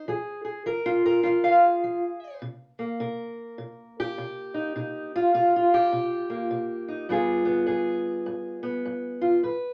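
A swung 4/4 pulse at 103 BPM carries this brief, mournful cut from a longer acoustic country blues in C minor, with a fingerpicked steel-string parlour guitar playing alone, up front, from G2 to F5. The old strings give it a dark, woody, boxy voice that broods over Fm, then Cm7 from 2.4 seconds and G7b9 at 7.1 seconds. A wet studio reverb with a short 0.5-second decay frames the playing.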